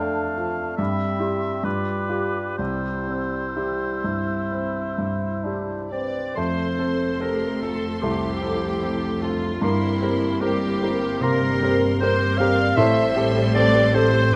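Lyrical and passionate, this rubato romantic excerpt for piano and orchestra moves at 61-80 BPM in C major, with a clear, slightly worn grand piano carrying the melody up front over a bright clarinet, warm oboe, airy hollow flutes and a distant, roomy bassoon. Lush violins enter at 5.9 s, just before the key turns to F major at 6.4 s, when a second, distant violin section, very quiet chamber violas, mellow, punchy French horns, intense cellos and smooth double basses join, all bathed in the moderate reverb of a scoring stage.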